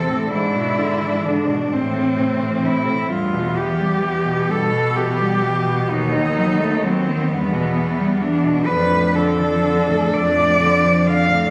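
A solo cello carries the melody up front, ranging from B3 to F5 with vibrato, portamento and an expressive, rich tone, in this melancholic, elegiac fragment of a longer classical piece for cello ensemble. Three more bowed cellos, one player each, support it with vibrato and a smooth, even sound. A second line sits in the background within a narrow range, a distant accompanying part moves between E2 and A3, and a bass with a smooth top spans D#2 to B2, all four parts playing from the start. The music moves slowly at 43 dotted-quarter beats per minute in 6/8, with a rubato feel, as the harmony passes from E7/G# and Am/E through Em and B7/D# before turning to Dm/F at 8.7 seconds. The bass stops at 11.3 seconds, just before the other parts close at 11.5 seconds. A moderate concert-hall reverb with a 2.1-second decay surrounds the ensemble, caught on a phone in the room with added studio reverb.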